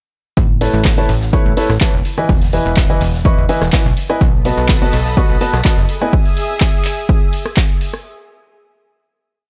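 An overdriven, up-front electronic kick drives a steady four-on-the-floor pulse through this uplifting, joyful piano house drop, joined by a punchy, tape-colored drum machine with handclaps, open hi-hats and rim clicks, plus a very quiet, crunchy looped breakbeat with edits that sits gritty and rolled-off beneath. A plucky, funky sawtooth bass and an intimate baby grand piano, its action noise audible, both play dotted rhythms with sidechain pumping, the piano voicing its chords over Aadd9, Emaj7, B7 and Emaj7/B. At 4.2 seconds a silky, detuned analog string pad with ensemble chorus enters with sustained bright chords, and the kick carries on until 7.7 seconds in this dry, gritty hardware-recorded piece.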